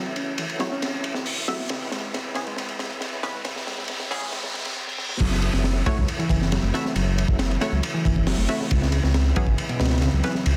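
Breakbeat excerpt in F# minor at 137 BPM, gritty and energetic, where a crunchy, saturated drum kit with a punchy kick, high-tuned snare and dark, rolled-off cymbals drives a reedy electric piano riff with tube saturation and delay, muted chorused dub chord stabs, and thick overdriven organ chords through a fast rotary speaker with sidechain pumping, while a riser and reverse cymbal build with filter sweeps and drum fills over F#m7 and C#m7 until the drop at 5.2 seconds brings in a deep, rumbling detuned saw bass beneath a dense, heavily limited master.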